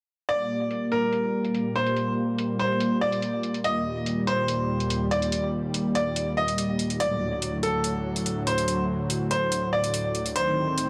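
A dark production bathed in hall reverb frames this menacing, chaotic half-time heavy wobble dubstep excerpt in G harmonic minor at 143 BPM, where a brilliant grand piano carries the melody through tape echo over a lush, detuned supersaw pad holding sustained chords under a filter sweep as the harmony moves from Gm through Eb and D to Adim, while metallic electronic hi-hats sit beneath a low-pass filter in a small room reverb, each part running from 0.3 to 10.9 seconds.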